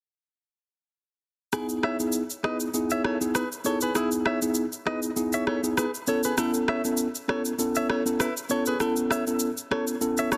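A dense, heavily limited modern master sits in a light reverb, giving this short afrobeats excerpt a close, polished sheen. The mood is breezy and sunny, with a lilting swing on the sixteenths. A mellow tine electric piano, clean and heard through its built-in speakers, carries the accompaniment up front in a low-middle register. Over it, a direct-recorded electric guitar plays a bright, twangy, compressed picked riff that runs through a tape echo. An electronic rim click and shaker keep time close to the ear, with soft clipping on the snare. All three parts play together from 1.5 s, moving from Emaj7 to Aadd9 at 6.1 s before the clip ends at 10.4 s.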